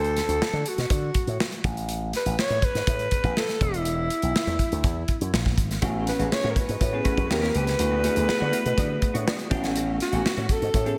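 A big, arena-sized sound with moderate scoring-stage reverb and a touch of small-room ambience frames this short, upbeat cut from a longer piece of polished 1980s jazz-funk pop at 122 BPM in A major. Up front, a growling alto saxophone carries the melody with a breathy, raspy subtone and light vibrato, its jazz-style lines trailed by slapback echo and digital delay. Beneath it, a punchy slap bass runs through an envelope filter for a bright, amped edge, while a modern studio drum kit with a tight kick, medium-tuned snare and airy hi-hat keeps a straight 4/4 pulse. At 5.8 seconds a sparkling, bell-like FM electric piano enters with subtle chorus and fast, decaying attacks, joined by a dark, clean, fingered electric guitar riff sitting compressed in the background under ensemble chorus. The harmony drifts through sus2 and sixth chords such as Asus2, A6 and D6, keeping the mood glossy and bright.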